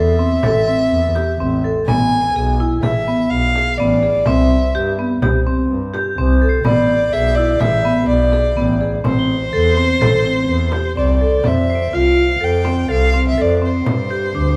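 Set back in the room under a moderate plate reverb, this restless, urgent excerpt of contemporary chamber music moves in 5/4 at 125 BPM in A minor, as a dark, woody bowed violin carries the melody up front over metallic, ringing hard-mallet vibraphone arpeggios and a clear, smooth bowed double bass, with a small acoustic frame drum played with soft hands and, from 6.0 to 12.5 seconds, shimmering bell-like crotales sitting softly in the background.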